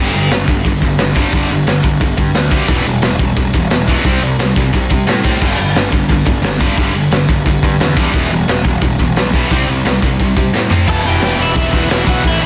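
A dense, heavily limited and nearly dry mix puts a raw garage drum kit up front, its small-room sound muffled and gritty with a punchy kick and a rolled-off top, in this upbeat, energetic punk rock excerpt at 176 BPM. Two bright distorted guitars sit in the background playing riffs over a growly, fuzz-laden picked bass, moving through G5, Em and C5 chords. After a drum fill at 10.5 seconds, a dark, slightly broken-up lead guitar melody and a very quiet, double-tracked cranked stack guitar join at 10.9 seconds as the harmony settles on Em.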